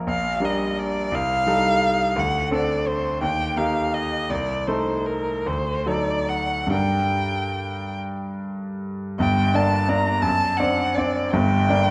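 Classical romantic duo in a flexible, rubato 6/8 and a lyrical mood, where a focused, smooth-topped bowed violin with vibrato carries the melody up front over a brilliant, intimate grand piano accompaniment with long sustain and audible action noise, all bathed in a reverberant recital hall with a dark, warm production, in a short passage cut from a longer piece.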